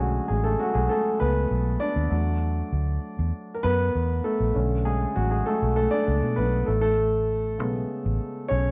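Lush 1970s-style soul at 99 BPM in 4/4, this bittersweet, smooth passage in B dorian is tuned to A4 = 437 Hz and moves through Bm7, E7sus4, Bm7 and Amaj7. An intimate grand piano, up front with audible action noise, carries a solo across the full 8.7 seconds. Beneath it, a dark, foam-muted fingered electric bass sits round and punchy, all in light reverb and small room ambience.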